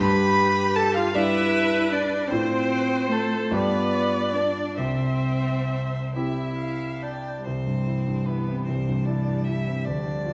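A warm concert grand piano sits up front with deep bass, accompanying a clear, smooth solo violin that carries the melody with even vibrato in this tender, serene slow romantic movement for piano quintet, heard in 6/8 at about 42-52 BPM with rubato in C major. Behind them, a rich cello and a focused, distant second violin play bowed second lines, while the viola adds soft-attacked, expressive accompaniment with portamento. The whole quintet shares a wet recital hall ambience, the harmony moves from G to a resolution on C at 4.8 seconds, and a new section begins at 7.5 seconds in this fragment of a longer piece.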